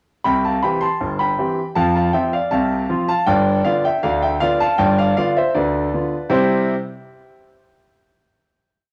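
A straight 2/4 pulse at 79 BPM carries this brief, cheerful and lively ragtime piece in C major. A brilliant concert grand piano plays alone from 0.2 to 6.7 seconds, sitting up front with a deep bass, its stride bass supporting a tune in thirds that spans G1 to C6 over a C, F5, G7 progression before settling on a final C chord at 6.3 seconds. The natural piano tone comes from a home cassette recording with a light touch of studio reverb.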